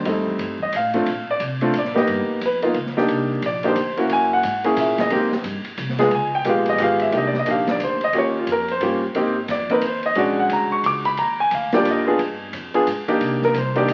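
Jazz piano trio in C minor, a smoky, moody waltz at a brisk 178 BPM in 3/4 with a swung eighth-note feel, cut from a longer piece. A baby grand piano carries the melody from the opening second to 13.9 seconds, sitting up front with a warm, natural tone and short sustain as it solos over a harmony that moves through rich extended chords such as Cm9, Db7#11 and Bb7alt. Beneath it, a pizzicato upright bass with steel strings gives a woody low end, while an acoustic drum kit on hi-hat, kick, ride and snare enters at 0.1 seconds with dark cymbals, a medium-tuned snare and a punchy kick, both sitting well behind the piano. The drums have a smooth, small-room character, yet the whole trio sits in a moderate large-studio reverb. Over it all lies the surface of a very old 78 rpm record, its vinyl crackle lending the performance an aged, smoky atmosphere.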